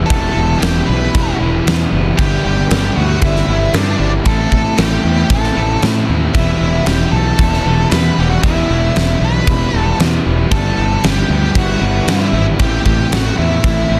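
A dense, heavily limited modern master with light small-room reverb frames this hazy, brooding fragment of shoegaze and dream pop rock, cut from a longer piece and played in a straight four. Up front sit a huge arena drum kit, with its fat snare, punchy kick and crash cymbal entering at 0.1 s, and a growly, overdriven fuzz fingered electric bass. Behind them, a thick fuzz guitar plays a dark, distorted riff bathed in lush chorus. An electric guitar through a small old amp adds a slightly broken-up, lo-fi riff washed in reverse reverb. An octave-fuzz lead guitar carries the picked melody, trailed by tape echo. The harmony circles through Em, G6 and Am across the whole passage.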